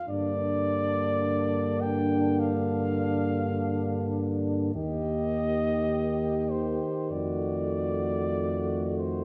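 Serene and warm, this rubato, hymn-like classical brass band fragment, cut from a longer piece, sets a dark, vibrato-rich cornet melody up front over a warm French horn section second line, a dark, smooth-topped euphonium, a close-miked mellow euphonium in the background and an up-front, mellow tuba bass, all playing together from the opening moments to 9.2 seconds through Gm7, Eb6 and F7b9 harmonies in a moderate recital hall reverb.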